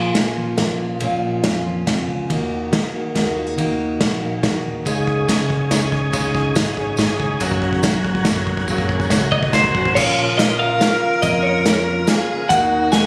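Captured on a phone in a small room, with light reverb and some added studio reverb, this stirring, yearning indie folk excerpt in Bb minor moves in a straight 3/4 at 141 BPM, building as it goes. A boxy old ladder-braced acoustic guitar, a full-bodied fingerpicked jumbo acoustic sitting in the background and a round, amped fingered electric bass open together, while an up-front unplugged drum kit played with bundle sticks, with dark cymbals and a tight kick, rolls through a long fill. A smooth tonewheel organ with slow rotary speaker and chorus vibrato joins with a jingly, saturated tambourine at 4.9 seconds, a twangy, compressed twelve-string electric guitar takes the melody with harmonic tremolo at 9.3 seconds, and a distant, rich bowed fiddle with slapback echo adds a second line at 10.0 seconds.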